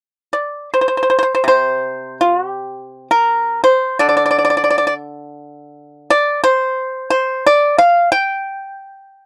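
Chinese traditional solo plucked strings in G yu mode, this contemplative, elegant fragment of a longer piece features a lone pipa, bright and percussive under fingerpicks, sitting up front in a close, dry 1970s-style studio sound with light reverb, moving in a rubato 4/4 at around 74-88 BPM from 0.3 to 9.3 seconds across a range from C3 to G5.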